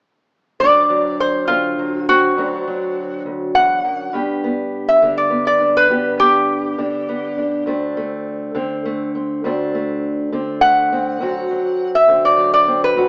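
A small-speaker sound with light reverb frames this short, swaggering piece of acoustic country blues, cut from a longer performance and rolling along in a straight 12/8 at 68 BPM in D mixolydian over D7 and G. Up front, a metal-body resonator guitar played with a steel bar and fingerpicks carries the melody from 0.6 to 13.1 seconds, its tone bright, metallic and nasal. Beneath it, a fingerpicked parlour steel-string acoustic guitar supplies a dark, boxy accompaniment that gives the rollicking tune its footing.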